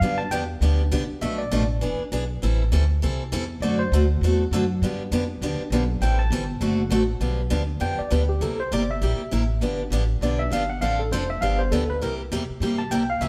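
Playful and charming, this short cut from a longer jazz manouche swing tune features a barky, gritty overdriven tine electric piano soloing throughout with a fast tremolo through a combo amp, over a bright, boxy picked acoustic archtop guitar and a woody pizzicato upright bass that sits up front, all played live together in a moderate stone room.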